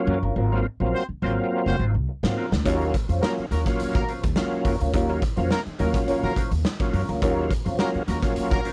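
A dry, close-sounding funk excerpt at 105 BPM with a driving, hypnotic mood, built on thick overdriven tonewheel organ stabs through chorus vibrato and a slow rotary speaker, a woody, growly pizzicato upright bass, a dark, clean, fingered electric guitar through wah, and a smooth-topped horn section with light vibrato playing a second line from 0.9 s, before a saturated garage drum kit with a punchy kick in a pumping stone room arrives at 2.2 s, all over a move from Ab13 to Ebm9.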